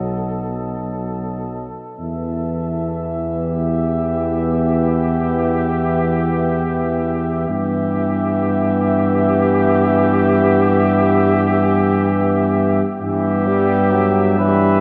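The mellow tuba stands out most, sitting up front in this classical, hymn-like brass band excerpt with a light vibrato and a smooth top to its low bass line. Above it, a mellow cornet carries the yearning melody in a narrow high range with vibrato, sounding distant and roomy, while a flugelhorn, also with vibrato, sings a second line just beneath. A clear trombone with a soft attack and a smooth-topped euphonium fill out the accompaniment from the background, all five parts sounding together for the full 14.8 seconds. The phrasing is rubato in a slow compound metre, and the harmony moves from B7 to E minor at 2.0 seconds, settling onto E minor over G at 7.5 seconds. A long church reverb and a dark, warm production give the whole an elegiac glow.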